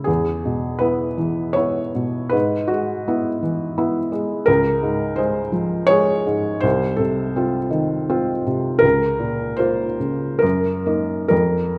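Rubato in three, this romantic nocturne for solo felt-muted upright piano drifts with a nostalgic, tender mood across an excerpt cut from a longer piece. The piano sits up front with a soft, mellow, intimate tone and short sustain, spanning C2 to C#5 as its harmony moves from E through Db and F7/C to Bbm/Db and Ebm/Gb. A moderate recital-hall reverb, 1.6 seconds long, surrounds the instrument.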